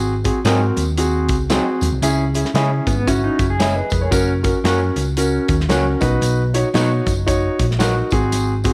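An intimate grand piano with audible action noise sits up front beside a dark, round hollow-body bass with tube saturation in this danceable excerpt of uptempo 1960s-style soul, swinging at 114 BPM in B major over G#7, C#m, F# and B. A natural country drum kit with a punchy kick, a jingly tambourine in the background and barely audible thick-skinned congas fill out the groove, while a twangy, slightly broken-up guitar through a small old amp adds stabs. From 2.9 to 4.1 seconds, a clean, compressed electric guitar plays a brief fingered riff with tremolo, heard in light reverb and small-room ambience.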